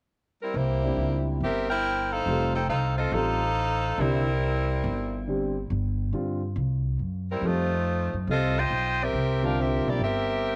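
Swinging and joyful, this short jazz excerpt, cut from a longer piece, rides a swung eighth-note feel in four. A bright saxophone section carries the melody from 0.4 seconds, its smooth top and light vibrato sitting up front with an ensemble polish. An upright bass plucked on steel strings joins almost at once, woody and close in the mix, holding down the low end beneath the horns. A dark concert grand piano enters at 0.8 seconds as accompaniment, its mellow voicing and long sustain filling the middle register before it drops out at 10.0 seconds. The harmony moves through dominant seventh chords on C and F and a bare G fifth, with a brief chordless stretch before settling back, all framed by light reverb and studio ambience.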